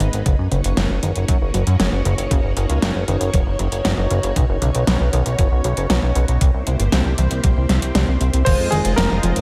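Driving and nostalgic, this synthwave excerpt moves at 117 BPM in a straight 4/4, with a lush string machine ensemble holding slow-blooming chords that pump against the sidechain over a glossy, nasal chorused synth bass up front and a very quiet, detuned unison pluck running arpeggios. A thumpy electronic kick and an overdriven pop kit, with a fat snare, metallic hi-hats and crash cymbal in gated reverb, drive the groove until the kick drops out at 8.0 seconds. A warm electric grand piano then takes a brief melody through delay from 8.4 seconds, and phased polysynth stabs arrive at 8.5 seconds on an Fm7, all in a dry mix.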